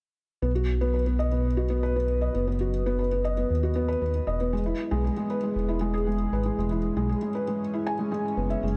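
A straight 4/4 pulse carries this tender, hopeful electronica fragment, where a felt-muted upright piano with audible action noise plays a boxy, intimate riff through delay from 0.4 seconds, a deep, rumbling detuned saw bass sits up front under a filter sweep, and a very quiet, lush chorused pad enters at 2.3 seconds with slow-blooming sustained chords as the harmony moves from B to E, all within a light reverb.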